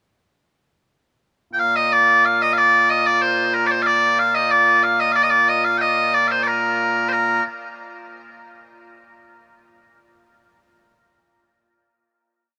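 Bathed in a huge ambient reverb, a loud, piercing solo bagpipe stands up front and carries a proud, stirring modal melody with ornaments in straight 2/4 Scottish pipe music, sounding from 1.5 to 7.4 seconds before its final note rings out into the room.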